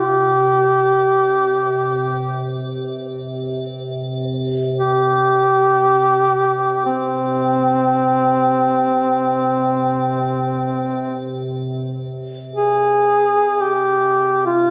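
Unmetered and in free time, this solemn, longing Caucasian folk lament is a short passage cut from a longer piece, tuned to A4 = 436 Hz. A warm duduk carries the melody up front as a folk-style solo, its vibrato and scooped notes moving between C4 and Ab4. Beneath it an icy, crystalline glass pad holds a quieter drone on C3 with a slow attack, chorus and its own reverb, while a moderate church reverb and the sound of a phone recording in the room frame the pair, and the opening phrase returns at 11.7 s.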